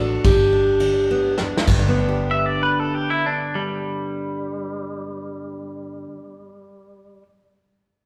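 A jumbo steel-string acoustic guitar carries the melody up front at the very start of this heartfelt, down-home honky-tonk and classic country cut, its fresh, bright strings letting through a little finger squeak before it stops at 1.3 seconds. The piece sits in G major in 3/4 with a straight feel, at a tempo between 95 and 113 BPM that slows over the opening two seconds, and a drum fill rounds off that first stretch. Underneath, a second picked acoustic, a full-bodied dreadnought, plays accompaniment, while a vintage foam-muted fingered electric bass adds a round, punchy low end. A soft brush drum kit, heard from a roomy distance with dark cymbals, a medium-tuned snare and a rolled-off top, also plays. At 2.3 seconds a twangy, clean, compressed electric guitar takes up a second line and keeps going to the close, all within a moderate recital-hall reverb that suggests a church or concert hall.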